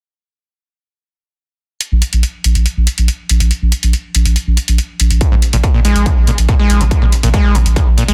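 A dense, heavily limited master with very little reverb carries this dark, intense slice of driving peak-time techno in a straight 4/4 metre. An overdriven analog hi-hat, re-recorded in a large room and pumping against the sidechain, enters at 1.8 seconds and is joined at 1.9 seconds by a deep, thick, saturated sine sub bass that sits up front under a low-pass filter with its own pumping overdrive. A layered, distorted kick punches in at 5.2 seconds, and a squelchy, screaming sawtooth acid riff follows at 5.3 seconds, resonant and bright with a filter sweep, chorus, tape echo and sidechain pumping.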